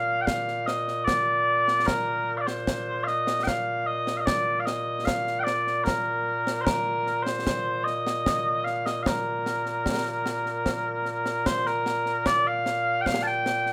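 In a straight 3/4 at 75 BPM, this proud, ceremonial passage of Scottish traditional pipe music in Bb major, cut from a longer piece, sets sweet, mellow small bagpipes up front carrying a continuous, vibrato-laden solo melody from Bb2 to A5, joined at 0.3 s by close, dry concert snare and bass drum with dark cymbals, all within a wet studio reverb and a rough home-demo mix that shifts into a new section at 11.5 s before ending at 13.7 s.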